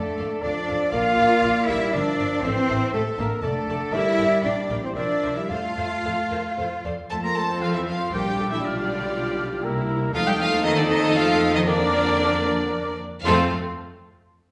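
Heard first in this restless, urgent excerpt from a quick classical-period symphony movement in F major and 3/4 at 109-122 BPM with a rubato feel, mellow French horns hold sustained chords as a background trumpet adds stabs, lush cellos carry the bass, violas fill the accompaniment, and a distant violin section, a dark clarinet, a very quiet hollow flute group and a roomy oboe weave second lines, until at 0.2 seconds a rich, focused violin section takes the melody over expressive double basses, all set in a reverberant recital hall.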